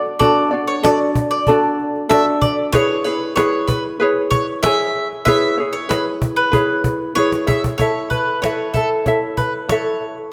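A straight 4/4 pulse at 95 BPM carries this heartfelt, carefree acoustic pop excerpt, cut from a longer piece. The cajon keeps the beat with soft hands and a woody tone, its faint snares heard in a small room, and it plays a fill from 7.2 to 7.8 seconds. Up front, a light, fingerpicked ukulele gives a gentle accompaniment from D4 to E5 over a D chord that moves to E6. Beside it, a bowl-back mandolin plays bright picked arpeggios between A4 and E5, its double strings ringing out. At 7.8 seconds the music shifts into a new section on an Esus4 chord. A wet plate reverb soaks the whole mix, lending it a dreamy glow.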